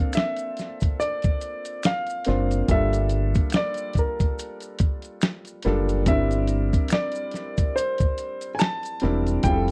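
Introspective and soulful, this neo-soul R&B excerpt sets an intimate grand piano melody, its action noise audible, over a woody, long-sustaining vintage upright piano accompaniment and a gritty, compressed sampler-style drum kit with a thumpy kick, while finger snaps, maracas and group handclaps add close acoustic colour, a dark, round, punchy fingered electric bass joins at 2.3 seconds, and the swung sixteenth-note feel moves through Bbmaj7, Gm7 and C7/G in a dry, close 1970s-style studio sound.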